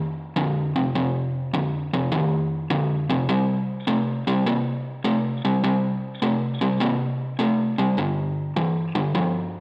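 A swung eighth-note 4/4 groove at 102 BPM drives this swaggering, rollicking blues fragment, where a lone overdriven semi-hollow electric guitar, picked up front with a warm hollow-body tone and a splash of spring reverb in a moderate club-sized room, moves from F5 to C5 at 3.3 seconds and on to G5 at 8.0 seconds.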